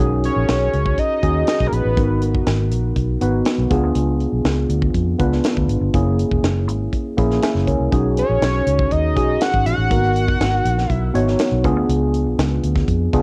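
A tight funk drum kit with a high-tuned snare in a small room sets a straight 4/4 groove under a round, foam-muted fingered electric bass sitting dark and punchy up front, while a worn, slightly out-of-tune tine electric piano with analog chorus and cassette-tape grit lays down mellow chords and a fat sawtooth-and-square analog lead with sub octave, filter sweep and vibrato sings its sustained melody at 0.3 and again from 8.2 seconds, giving this excerpt of polished 1980s jazz-funk pop a nocturnal, urban glow.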